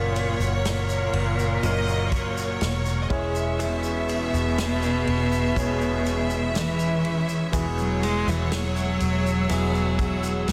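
Pop ballad with a hopeful, emotional mood, built around a single bowed cello that carries the melody up front with smooth, even vibrato. Close behind it, a lush studio violin section sings a second line, while a symphonic string section holds focused, smooth-topped chords in the background. A concert grand piano with deep bass and long sustain fills out the accompaniment, and a dark, round, foam-muted electric bass adds a punchy low end. From 0.2 seconds, a distant, roomy acoustic drum kit played with bundle sticks sits in the background with kick, snare and dark ride cymbal, joined by a grainy, mellow tube shaker. A clean, direct-recorded electric guitar enters at 3.6 seconds with very quiet picked arpeggios as the harmony moves from F# through C#m/E to Eadd9. The sound has light reverb and small room ambience under a dense, heavily limited modern master, and the passage is cut from a longer piece.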